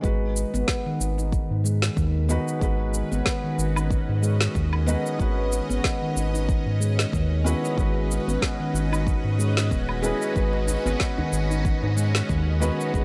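A ringing handpan, struck with the fingertips and trailed by delay, spins meditative arpeggios at the heart of this mystical, organic downtempo excerpt in G# minor pentatonic, moving at 93 BPM in 4/4 with a lightly swung sixteenth-note feel. Beneath it, a felt-muted upright piano offers soft, intimate accompaniment with audible action noise, its sound breathing with sidechain pumping and echoing through its own delay. A round, dark analog bass sits up front with a fast attack and sustained notes, also pumping against the deep, layered electronic kick, while an electronic shaker, woody snare and woodblock fill out the produced groove. From 2.2 seconds a bright, string-like drone with a bowed quality fades in slowly, its detuned unison tone carrying vibrato, phaser, built-in reverb and its own pumping motion. A very quiet djembe with a live-room character appears at 10.5 seconds as the harmony returns from E69/G# to G#m7, and light reverb gives the whole mix a gentle sense of space.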